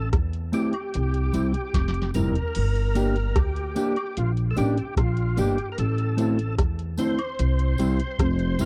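A meditative, hypnotic stretch of roots reggae cut from a longer piece, moving in a straight 4/4 through Am, C and Gm chords. An overdriven tonewheel organ carries the melody with a gritty, percussive tone and audible key click, its chorus vibrato, slow rotary speaker and tape echo giving the line a swirling depth. Underneath, a woody pizzicato upright bass sits up front alongside a soft vintage rhythm box with a deep kick, tonal snare, metallic hats, rim click, toms and crash, which plays a fill from 1.7 to 2.5 seconds as the music moves into its second part. From 0.5 seconds a dark, clean, fingered electric guitar adds accompaniment colored by analog chorus and tape echo, while a faint layer of tambourine, woodblock, egg shaker and group handclap sits in a small room. The sound is dry and close, with little reverb, in the manner of a 1970s studio recording.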